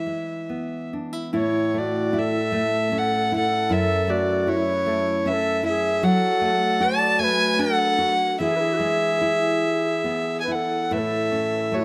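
Closely miked and detailed in a light reverb, this excerpt from a longer Celtic slow air unfolds in a pastoral, tender mood with a free, rubato sway in three. A dark, woody fiddle with light vibrato carries the melody up front, while a full-bodied nylon-string guitar, fingerpicked in a deep classical style, supplies the accompaniment. At 1.4 seconds an airy wooden flute with a straight, tongued tone enters on a second line, its bright highs trailed by tape echo.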